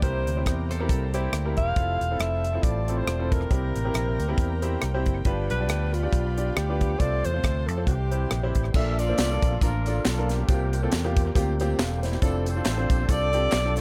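Swung eighths in a steady four drive this reverent, hopeful uptempo gospel, with a tight, up-front funk drum kit and a round, amped fingered electric bass under a brilliant, woody upright piano, a very quiet, lightly overdriven tonewheel organ with key click and fast rotary, and a faint, lush bowed string section. A clear alto saxophone with soft attack and vibrato carries the melody through analog delay, while a clean, picked electric guitar adds a brief echoing second line near 0.7 s. After the saxophone stops at 8.5 s, tambourine and group handclaps join in the background and a mellow, smooth-topped horn section takes over the melody, also echoed, in this dry, echo-heavy mix.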